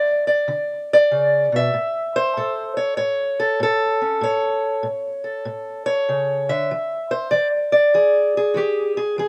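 A fingerpicked steel-string acoustic guitar carries this short cut from a longer acoustic country blues piece, playing solo and sitting up front from start to finish. Its parlour-style tone is dark, woody and boxy, with the character of old strings, ranging from A2 up to E5. The mood is soulful and swaggering, moving at 96 BPM in 4/4 with a swung eighth-note feel in A major, tuned slightly high at A4 = 442 Hz. The guitar opens over an unaccompanied, chordless stretch before settling onto A at 1.7 seconds and moving to E at 6.7 seconds. Recorded outdoors, the sound is dry, with little reverb around the instrument.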